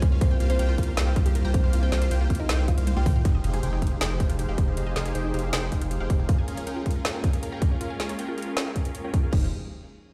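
Future bass in F minor at 158 BPM with a half-time 4/4 feel, this lush, emotional cut from a longer piece opens on a drop where a woody, hollow kalimba melody and huge, bright supersaw chords join a pair of detuned sawtooth unison plucks in the background (one with phaser and cassette tape grit, the other with tape echo), a deep saturated sine sub bass, a hard-clipped kick and a trap kit with metallic hats, snare, toms and crash, with sidechain pumping on the kalimba, plucks, supersaws and bass. A soft, breathy pad with chorus enters just as a drum fill leads at 3.3 seconds into a very quiet impact and a filter sweep on the arpeggios, while the chords move from Fm9 to Bbm7, all set in a bare room with a large studio reverb.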